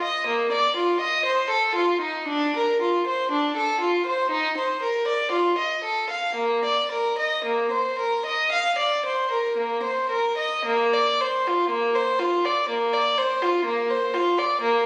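A lone bowed violin carries this grave, solemn baroque-style suite movement, its reedy gut-string tone shaded with light vibrato in a period style. Played by one player and placed up front, it ranges from Bb3 to F5 in Bb major, moving in a free, rubato 4/4 at a slow 53-63 BPM. The 14.9-second excerpt is cut from a longer piece, with a new section beginning at 10.7 seconds. A moderate recital hall reverb, with a decay of about 1.6 seconds, surrounds the instrument. The sound was captured on a phone in the room.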